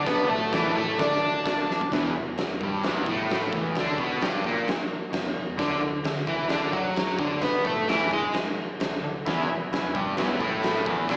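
A crunchy, double-tracked overdriven guitar leads this raw, rowdy garage rock clip, playing an up-front riff with slapback echo from start to finish, moving between D5 and E5 power chords before landing on E. Behind it, an oversized, low-tuned acoustic drum kit comes through with a punchy kick, fat snare, toms and crash cymbal, its gritty, saturated sound set in a bright stone room, and a drum fill at 1.7 seconds kicks the song into its main section. A round, hollow-body short-scale bass sits dark and amped in the background. A vintage combo organ adds buzzy sustained chords with heavy vibrato, heard only briefly at the opening and again from 9.3 seconds. The tempo is a straight 131 BPM in 4/4, and the whole band comes across like a live gig heard through the venue's PA, with small-speaker boxiness and a recital-hall reverb around the players, cut from a longer piece.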